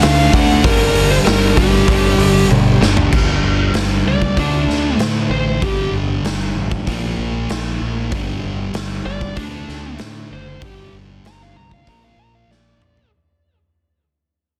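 A straight 4/4 hard rock groove at 96 BPM drives this aggressive, menacing G minor excerpt, with a punchy, saturated garage drum kit up front in a bright stone room and a growling, overdriven fingered bass beneath it. Through the opening 3.1 seconds, a faint, gritty tonewheel organ on a slow rotary speaker holds sustained chords and a very quiet, double-tracked distorted guitar adds to the riff, alongside a dark semi-hollow guitar and a sludgy guitar that carry on in the background. A bluesy, distorted lead guitar with digital delay plays the melody from the start, and from 3.1 seconds it takes a solo as the dense, heavily limited mix fades out toward 13.1 seconds, with drum fills marking each section's end.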